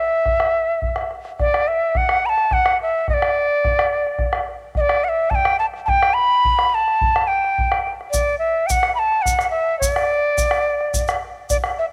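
A cane quena opens this wistful, melancholic Andean folk excerpt, its airy, end-blown tone carrying the melody with vibrato and tongued notes, close-miked and up front, ranging from D5 to B5. At 0.3 seconds the bombo joins, deep and dark, its acoustic sound placed up front with a live-room character. The piece moves at an unhurried 71 BPM in 6/8 with a straight feel, tuned to A4 = 439 Hz. Near the end, a grainy, bright tube shaker enters at 8.1 seconds, sounding as if captured in a small room, and sits lower in the mix than the drum. Light reverb and the soft grain of a home cassette recording give the whole performance an intimate, worn quality, with the quena's tape coloring adding to its nostalgic feel.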